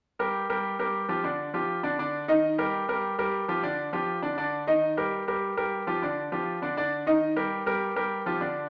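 A clear concert grand piano plays alone from 0.2 s, driving and danceable in a straight Latin feel, opening on Fsus24, then alternating G5 and Ebadd9 chords. The piano sits up front, polished and intimate, with deep bass and audible action noise, set in a wet studio reverb. This short cut from a longer piece runs to 8.7 s.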